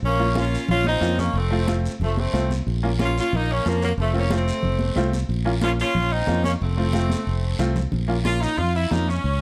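A straight 4/4 cumbia groove at 182 BPM in Bb minor carries this passionate, fiery excerpt: growly, up-front fingered electric bass and very quiet, high-tuned congas drive it, a raspy guiro joins at 0.1 seconds, a bright, woody, slightly detuned upright piano comps between Bbm and F, and an edgy saxophone section leads with jazz-style vibrato, stepping forward for a solo at 7.9 seconds after a drum fill from 7.1 seconds, all captured with close, detailed microphones and light reverb.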